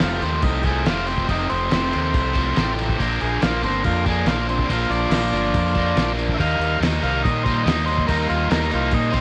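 Raw and rowdy, this short cut of garage rock charges along at 142 BPM in a straight 4/4, with a buzzy, vintage combo organ taking a clean solo across the whole 9.2 seconds over chords moving from F to Bb at 3.0 s and Eb at 6.4 s. Beneath it, a bright, double-tracked overdriven guitar drives the riff up front, while a growling fingered bass, punchy and overdriven, holds down the low end. A cloth-damped drum kit thuds away with a fat snare, tight kick and dark, muffled crash cymbals, its lo-fi, gritty sound set in a small room with light reverb.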